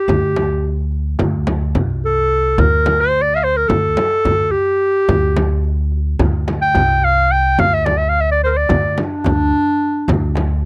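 Melancholic and hypnotic, this short cut from a longer Turkish makam ensemble piece moves in a straight 9/8, with a clear, classical-style clarinet carrying the solo melody up front from D4 to G5. Beneath it, a woody, thumpy pizzicato upright bass on gut strings holds the low end, while a deep frame drum struck with hard hands sits close and dry, and a clay-shelled darbuka with natural skin sounds large and distant, as if in a big room. The recording is dry and close, in the manner of a 1970s studio session.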